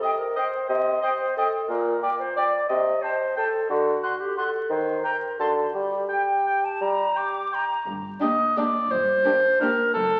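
An up-front cor anglais carries a second line through this bittersweet, dark fragment of a classical orchestral ballroom waltz in 3/4, played with rubato alongside a distant, silvery flute, a roomy solo clarinet and a mellow, vintage-toned bassoon accompaniment. As the other woodwinds fall away, soft cello and double bass sections enter at 7.9 seconds in the background, and at 8.2 seconds violin sections briefly add a floating, pure melody and a woody second line over a lush viola section with vibrato. It all sits in a wet scoring-stage reverb, heard through a very old 78 rpm record with vinyl crackle and faint mains hum.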